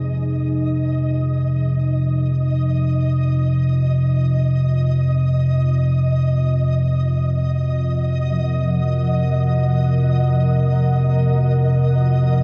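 Drenched in a vast, echoing cathedral reverb, this ominous and cavernous dark ambient drone excerpt rests on an up-front, rumbling, detuned low drone beneath a moody, warbling vintage pad of sustained chords shifting from Fm to Ebmadd9/F at 4.8 seconds, while a grainy, flickering granular texture fades in throughout and a very quiet, mellow bronze metallophone rings with shimmering beats in arpeggios at the start and again from 8.3 seconds.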